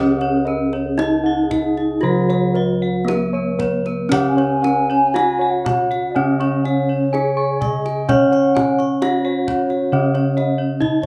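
Shimmering and serene, this short cut from a longer Javanese gamelan piece in straight 4/4 sets a bright, horn-mallet bronze metallophone melody with paired-tuning beats over an airy, wooden-mallet metallophone accompaniment, while a second horn-struck metallophone and round, mid-forward bossed gongs share ringing arpeggios, lower bossed gongs with a boxy, warm tone carry the bass, a distant, hollow bass bansuri with vibrato traces a tongued second line, and a tight, compressed, saturated kendang, played with hard hands, enters at 0.2 seconds, with a drum fill arriving at 10.8 seconds, all captured live in one room with moderate large studio reverb.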